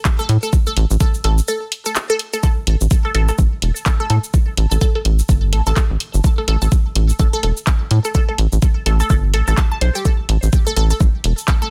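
Minimal techno at 126 BPM with a 16th-note swing and a sparse, clinical mood, driven by an up-front, overdriven knocking electronic kick and a tape-warm garage kit of cabasa, handclaps and hi-hat with soft clipping on the snare, while a rubbery, hollow square bass with tube saturation and sidechain pumping sits between E1 and A2 under a juicy, squelchy resonant blip pluck riff running from G4 to A5 through phaser, digital delay and pumping, all in a dry, dense, heavily limited master with a brief break from 1.5 to 2.4 seconds in this excerpt cut from a longer piece.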